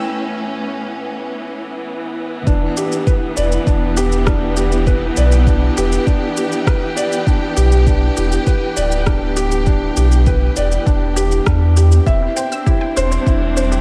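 A straight 4/4 pulse at 100 BPM lands at 2.5 seconds, when a deep, tape-warm electronic kick, a reverb-touched electronic shaker and rim click, and a round sine sub bass with sidechain pumping drop in beneath this intimate, moving piano and strings electronica piece in E minor. From the start, a lush, bowed symphonic string section holds sustained chords with expressive vibrato, while a soft felt-muted upright piano, its action noise audible, plays a delayed riff. A detuned, warbling analog pluck with chorus, delay and sidechain pumping sounds its arpeggios in the background at the opening and returns at 12.1 seconds, all in a lightly reverberant digital ambience.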